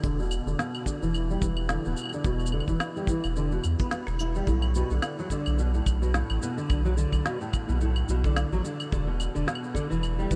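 A fingerpicked steel-string acoustic guitar sits at the heart of this autumnal, wistful folktronica excerpt, its full-bodied jumbo arpeggios placed up front, coloured by ensemble chorus and tape echo and shaped by a low-pass filter sweep across all 10.4 seconds. Beneath it, a round, sine-like sub bass holds deep sustained notes, while a dry, tight acoustic kick and an electronic kit of shaker, claves and woody snare carry a lightly swung 108 BPM groove in 4/4. The harmony moves from E7(no3) to Bm7 at 4.5 seconds and back, all set in a small room with light reverb.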